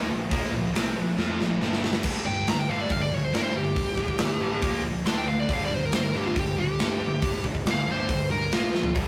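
The smooth overdriven lead guitar enters up front at 2.3 seconds with a dark, picked solo that soars in a high register over a menacing, driving hard rock groove in G minor at 139 BPM. Beneath it, two bright, high-gain distorted guitars, one of them scooped, grind out the riff from the start, sitting in the background alongside a fuzz picked electric bass whose punchy, overdriven tone adds weight low in the mix. A big rock drum kit arrives at 0.3 seconds, up front with a punchy kick, medium-tuned snare, toms, hi-hat and bright crash cymbals, and it rolls through a fill before the solo section begins at 2.0 seconds. The power-chord movement shifts among Bb5, G5 and D5, keeping the straight 4/4 feel heavy and relentless. A moderate stone room reverb and tube saturation give this rough rehearsal-room recording a raw, live character, and the passage is cut from a longer piece.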